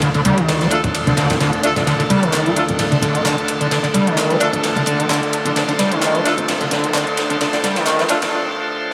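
A gritty, echo-heavy mix soaked in spring reverb and vinyl crackle opens this energetic breakbeat excerpt at 130 BPM in D Phrygian, where a screaming, squelchy sawtooth acid riff sits up front with distortion, chorus and delay over a shouting tonewheel organ holding sustained Dm chords with key click, slow rotary speaker, sampler grit and sidechain pumping. A crunchy, dark-cymballed acoustic breakbeat kit of kick, snare and ride drives the swung groove alongside an overdriven electronic layer of handclaps and hi-hat, while distant, low-tuned congas enter at 0.3 seconds and a punchy horn section with light vibrato adds background stabs from 0.7 seconds. The passage builds throughout, a drum fill running from 1.9 seconds before a brief break at 8.3 seconds.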